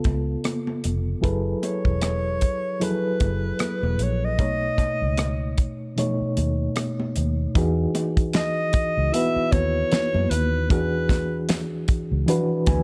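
Lush 1970s-style soul in E major at a relaxed 76 BPM with a swung 16th feel, this warm excerpt opens on a reedy electric piano with fast tremolo and a dry, damped drum kit with a fat snare and tight kick, while a dark, foam-muted electric bass and ringing, high-tuned congas in the background join at 0.1 seconds. A mellow alto saxophone takes the solo melody from 1.6 seconds, its subtone, vibrato and scooped notes giving a smooth, jazz-style voice up front over rich chords such as F#m11 and B9. As the harmony settles onto Emaj9 at 7.6 seconds, a very quiet, bell-like celesta adds delicate, sweet touches in a close, intimate sound with little reverb.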